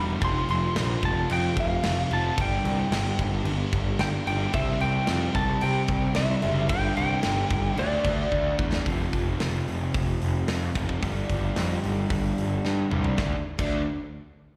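Heard as a live gig through the venue's PA with recital-hall reverb and a small-room ambience, this hard rock excerpt has a driving, menacing feel. A growly, fuzz-soaked picked bass sits up front beneath a dark, double-tracked overdriven guitar riff over F5, G5, C and D5 chords, while a compressed, slightly broken-up lead guitar with slapback echo carries the melody until 8.6 seconds. A big, airy drum kit with bright cymbals and a punchy kick drives it all, adding fills at 8.3 and 12.6 seconds.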